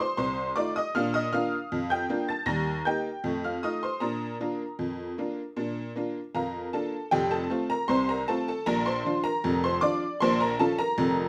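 Set in a straight 2/4 at 78 BPM, this short excerpt of ragtime piano has a cheerful, lively bounce from the first beat. A tack piano plays alone throughout, its metallic, jangly tone sitting up front with a percussive, vintage bite over a range from F1 up to Bb6. The opening passage in Bb major moves from F7 to Bb, then through Eb and back to F7 before settling on Bb at 4.0 seconds. At 7.1 seconds a new section shifts the key to F major, passing to Bb and then to a Bb minor chord at 10.2 seconds before the clip is cut off at 11.3 seconds. A moderate studio reverb lends a little room around the bright, smooth attack of the instrument.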